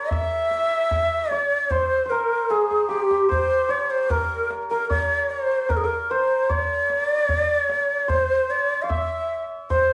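A breathy, reedy end-blown ney carries the melody up front in this stately, festive fragment of Persian modal ensemble music, with its crisp attack and vibrato, while a shimmering hammered santur plays a softer second line beneath it. A deep, dry tombak played with hard hands joins almost at once and drops a fill between 2.5 and 3.3 seconds. A moderate studio reverb lends the ensemble a modest sense of space.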